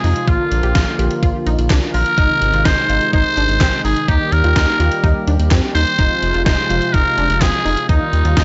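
This short cut from a longer synth-pop track has a dry, gritty hardware sound with a cassette-tape character, little room ambience and a top end that stops at 7.8 kHz. At 126 BPM in a straight 4/4 and in Eb major, the mood is nostalgic and bright, moving through Bb, Ab, Eb and Fm before landing on Ebadd9 near 7.9 seconds. Up front, a trumpet with a metal mute carries the melody between Eb4 and C5, its tone buzzy, raspy and growling in a vintage pop style. Beneath it, a bold analog pad holds sustained brassy chords with chorus and vibrato, while a detuned unison pluck sits in the background playing punchy arpeggios through tape echo. A round, deep analog bass with transformer saturation anchors the low end, and a gated 80s digital drum machine supplies a thumpy kick, hi-hat, handclaps and a snare soaked in gated reverb, with all five parts playing from start to finish.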